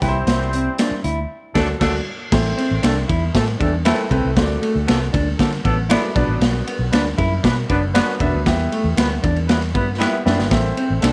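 A straight 4/4 groove at 117 BPM drives this joyful, uptempo 1960s-style soul passage, cut from a longer piece, with a raw garage drum kit up front: punchy kick, medium-tuned snare and dark cymbals, gritty and saturated in a pumping small room, plus a drum fill at 10.0 seconds. A vintage foam-muted fingered bass plays round and punchy beneath a mellow, clean electric guitar riff and a smooth grand piano, while a distant, roomy horn section with light vibrato and octave doubling carries a dark second line. Very quiet, close and dry finger snaps join at 0.8 seconds, the band hits an accent at 1.3 seconds, and a small room ambience with light reverb gives the whole a warm, intimate feel as the chords move from C and D through Am, Bm and Em.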